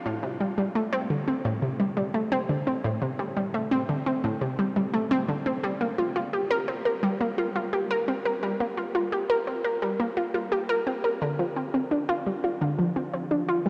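In a straight four-beat pulse, this mysterious, expansive ambient excerpt sets a lone analog pluck synth, round and detuned with a bright sawtooth-and-square edge, a noise layer, chorus and tape echo, up front from 0.1 to 13.7 seconds between A2 and Bb4, inside a huge, wet reverb and the warbling pitch drift of a worn old cassette tape.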